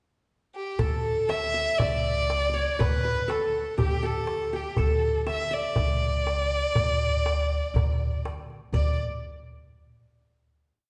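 A bowed solo violin leads this complete Arabic maqam ensemble piece, sitting close and up front with a passionate modal melody full of ornaments, vibrato and expressive portamento. It enters at 0.6 seconds in a brief pickup, and at 0.8 seconds the qanun joins, its fingerpicked triple strings giving a bright edge as it plays the same line with its own ornaments. Pizzicato upright bass on steel strings adds a woody, thumpy low end, placed on the low drum strokes, while a clay darbuka with a natural skin head, heard close and dry, plays a pattern of low and high strokes. The tempo holds a straight 121 BPM in 4/4 through a single section before the ensemble closes on a final note at 8.7 seconds. The ensemble sounds as if heard from further back in a recital hall, with a wet, lingering reverb and a soft, rounded top that gives the whole performance a warm glow.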